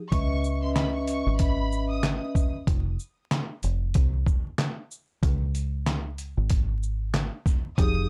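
Dark and tough, this short boom-bap hip-hop cut rides a swung 4/4 groove with a dry, dark, warm production laced with vinyl crackle. A sampler-style drum kit, pitched down, compressed and gritty, runs from 0.1 to 8.0 seconds with a thumpy kick, medium-tuned snare, handclaps, hi-hat and shaker, sitting up front with the boxy character of a small room. Beneath it, a deep dub fingered electric bass holds the low end throughout, round, punchy and foam-muted. A mellow vibraphone struck with soft mallets rings with slow motor vibrato over the opening Dbm9 chord until 2.5 seconds, while a clear, focused violin section carries a brief bowed melody in its high register through digital delay, both parts returning for a short moment at 7.8 seconds. After the strings and vibraphone drop away, the bass and drums carry the harmony alone through F5 and Db5, keeping the mood stark and heavy.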